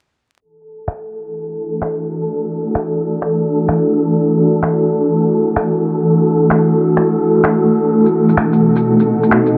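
Swung sixteenths at 128 BPM in 4/4 come from muffled, pitched-down electronic finger snaps and shaker entering at 0.9 seconds, setting a ghostly, rainy future garage mood in a short cut from a longer piece. A breathy, wind-like tuned noise texture on A4 drifts in at the same moment, and a cloudy, evolving granular pad carries sustained chords up front from 1.6 seconds with 12-bit sampler grit, moving from Esus2 to B7b9 at 7.9 seconds. The dark production adds vinyl crackle, a low-pass filter, light digital ambience, a fade-in on the pad, and a filter sweep.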